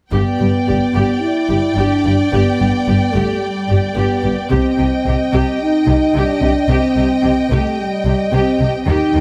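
Heroic and majestic, this cinematic excerpt moves in a steady, straight four, cut from a longer orchestral piece. A mellow French horn section sits up front with sustained chords, its classical tone carrying the harmony from G to C minor at 4.5 seconds. Beneath it, a bowed double bass section gives a focused, smooth-topped foundation, joined by a cello section with a soft attack and expressive vibrato. A lush viola section fills the middle with intense accompaniment, while one violin section holds a distant, high melody and a second violin section traces a lush second line just below it. Every part plays from 0.1 to 9.2 seconds, captured by close, detailed microphones with light reverb.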